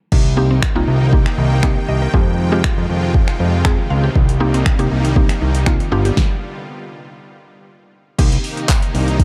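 A deep house drum kit with a deep kick and fat snare opens this energetic, bittersweet dance-pop excerpt at 119 BPM in C minor together with a thick, saturated analog bass and a lush supersaw pad that both pump under sidechain, while a woody FM mallet pluck plays arpeggios until 6.2 s, a second, very quiet, bright pluck with chorus and phaser adds accompaniment, and a barely audible, jingly tambourine appears at 8.7 s, all in a dark, dry production over chords of Cm7, Fmadd9, Cm7 and G7.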